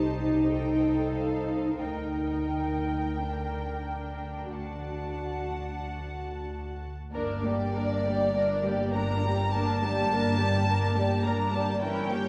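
A warm, bowed cello section sings out beneath a high violin melody in this slow, yearning, elegiac G minor fragment of a romantic string-orchestra movement at 44-53 BPM with free rubato, where a second violin line, softly bowed violas and a dark double bass section share the light vibrato and hushed sul tasto tone, all set back in the glow of a concert hall's long reverb.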